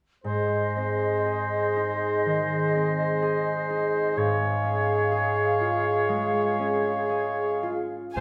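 Serene and warm, this slow, rubato romantic orchestral passage in Ab major (4/4, around 53-63 BPM) opens with ringing harp arpeggios beneath a clear, up-front oboe, a mellow bassoon, a distant clarinet and a pure-toned small flute group, all playing quiet supporting lines over a gentle move from Ab to Db/Ab in a moderate scoring-stage reverb, until at 8.2 s veiled, con sordino strings arrive: a lush violin section on the melody, violas in accompaniment and dark double basses in the background.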